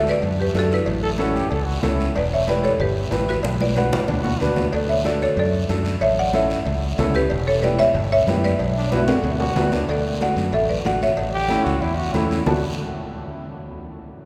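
Joyful, festive cumbia in which a buzzing, woody marimba with medium hard mallets carries the bright melody over a warm upright piano and an up-front, fingered electric bass, while raspy guiro, ringing high-tuned congas, and very quiet cowbell and timbales drive the percussion from the background. A gritty, growling trombone with vibrato adds a punchy second line in short bursts from 1.0 s, then holds its longest stretch from 8.8 s to the end of this cut from a longer piece. Drum fills mark the phrase turns, and the whole band sits in the long, cathedral-like reverb of a church or concert hall.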